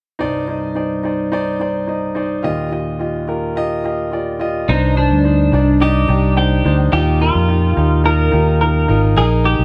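A concert grand piano with deep bass and long sustain opens this anthemic, uplifting piano-driven pop excerpt at 107 BPM in 4/4, its plate-reverbed chords moving between Cmadd9 and Ebadd9 before a clean, compressed twelve-string electric guitar takes the melody with lush chorus at 4.7 seconds, joined there by a round, amped fingered electric bass sitting up front in a light room reverb.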